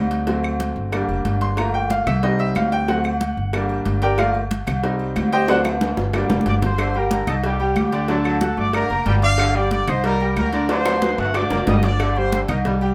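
A straight salsa groove in 4/4 drives this fiery, danceable cut from a longer piece. Up front, the plucked upright bass sounds woody and thumpy. Behind it, hard-hit congas with thin, damped skins, round low-tuned cowbell and bongos, and close claves keep the pulse, while ringing agogo bells and metal-shelled timbales sound distant in a large room. A brilliant, polished upright piano takes a solo across the opening, and a drum fill starts at 5.5 seconds and carries on as the horns arrive. At 6.5 seconds a clear, punchy trumpet section takes the melody with light vibrato and a smooth top, and at 6.8 seconds a bright, tight trombone section follows underneath with a second line. A second drum fill comes near the close, and the mix sits in moderate studio reverb.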